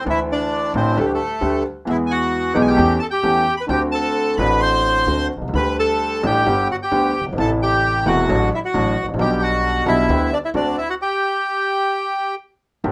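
A nostalgic, playful tango excerpt in a loose rubato 4/4, with a reedy, boxy bandoneon carrying the melody up front over an intimate concert grand piano whose deep bass and audible action noise give the accompaniment a natural closeness. A woody pizzicato upright bass with steel strings sits lower in the mix, and the whole trio shares a light reverb. The chords move through suspended and seventh harmonies before the band halts together at 11.0 seconds, leaving a brief stop before the clip ends.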